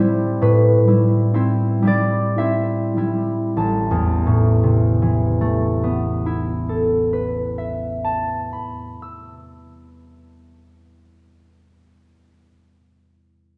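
A lush recital hall reverb surrounds this short fragment of a classical solo concert harp piece in A minor, its gentle, mysterious mood unfolding in a rubato 3/4 between 48 and 71 BPM. The harp sits up front with a thumb-plucked, ringing tone spanning A1 to E6, easing its pace over the first 3.6 seconds on an Am9 harmony. It then moves to Amadd9 and plays on until 11.7 seconds.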